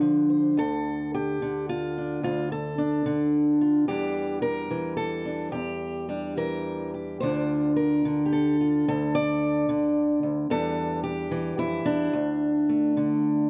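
A fingerpicked steel-string acoustic guitar with a warm, parlour character sits up front in light reverb, playing a reflective, melancholic solo folk passage in D minor at a rubato 109 BPM in 3/4, spanning D2 to D5 across chords like Dm, Em7b5 and Em7 before settling on D5 near 12.1 seconds in this 13.5-second excerpt cut from a longer piece.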